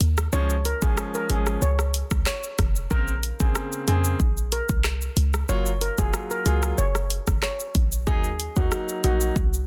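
Dancehall with a hypnotic, sultry mood, this short cut opens on a punchy, tight 808-style bass and an up-front deep house drum kit of deep kick, dark hats, handclaps, rim click and shaker, with soft clipping on the snare. From 0.3 seconds a shimmering, metallic steel pan carries the melody over a polished grand piano whose sidechain pumping breathes under chords moving from Db through Bbmadd9 and Gbmaj7 to Ebm. The mix is dry, dense and heavily limited.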